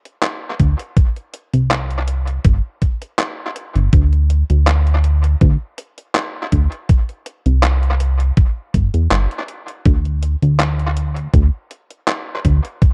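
Woozy and nostalgic, this short vaporwave fragment, cut from a longer piece, moves with a gentle swing in 4/4. An overdriven 8-bit drum machine with a detuned, sampler-style character opens at 0.1 s, supplying handclaps and hi-hat through tape echo, sitting back at a modest level. A thumpy electronic kick, also overdriven and sampler-style, arrives up front at 0.6 s alongside a chorused synth bass. The bass sits up front as well: a glossy, dark retro tone blending pulse and sawtooth waves with pulse-width modulation, detuned and shaped by a filter pluck with a fast attack that then sustains, moving between G1 and E2. The mix carries a digital ambience with heavy echo and a cassette-tape sheen, lending the whole fragment a hazy, secondhand glow.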